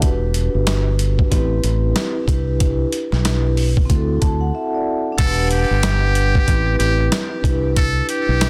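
Tough yet reflective, this boom-bap hip-hop cut rides a swung 93 BPM groove in 4/4. Up front sit a gritty, pitched-down sampler kit of thumpy kick, medium-tuned snare, hi-hat and crash, a dark, round fingered electric bass, and a mellow soft-mallet vibraphone ringing with slow motor vibrato over Em7, Am7, Cmaj7 and D7. After a short break at 4.5 seconds, a buzzy, breathy metal-muted trumpet enters at 5.2 seconds with a jazz-style solo line touched by digital delay, all within a dry, dense and heavily limited master.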